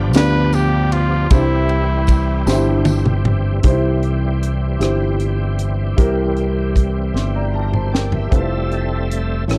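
A dry, close 1970s-style studio sound frames this uplifting, hopeful slow gospel excerpt in 6/8 at 51 BPM, where a growly fingered electric bass and a tight funk drum kit with a high-tuned snare sit up front beneath a natural grand piano and a shouting, lightly overdriven tonewheel organ with key click, chorus vibrato and slow rotary speaker, while a clear trumpet with light vibrato and slapback echo carries the melody until 2.9 s, a jingly tambourine sits in the background until 3.2 s, drum and piano fills arrive at 7.1 s, and the organ takes a solo over Fmaj7 from 8.3 s.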